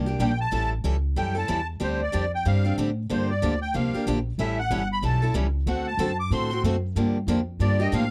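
Boxy, picked steel-string guitar and woody, thumpy pizzicato upright bass open this bittersweet fragment of acoustic gypsy-jazz swing, with a reedy, shimmering musette accordion entering at 0.2 seconds to carry a virtuosic solo over a minor-key progression, all captured in a dry, close 1970s-style studio sound with light reverb.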